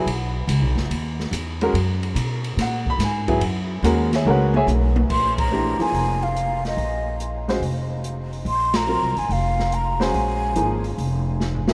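Drenched in a huge, echoing ambience, this cool, hypnotic modal jazz fragment swings at 143 BPM, with a woody, short-sustain upright piano comping alongside an up-front pizzicato upright bass and a dark, smooth drum kit with boomy kick and dark cymbals. After a drum fill, the music settles into Bb minor at 5.1 s, where a breathy, hollow concert flute enters close and soft-attacked with a straight-toned melody. Band accents punctuate this second half before the flute stops at 10.9 s and another brief drum fill closes the passage.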